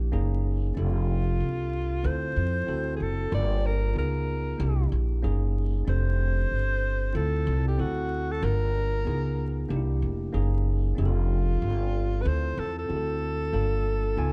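A lazy, swung sixteenth-note groove in four sets the pace of this smooth, relaxed hip hop excerpt, cut from a longer piece. An upright bass, plucked and up front, anchors the low end from the start with a woody, growly tone from its steel strings. A clean tine electric piano, heard as if through its own built-in speakers, sits back in the mix, comping lush extended chords that cycle through a jazzy progression of sixths, ninths and sevenths. At 0.8 seconds a dark alto saxophone enters as the jazz-style solo voice, up front and touched with slapback echo, its vibrato and scooped notes framed by a smooth top end. Studio reverb, vinyl crackle and a dark, warm production give the whole a dusky, late-night glow.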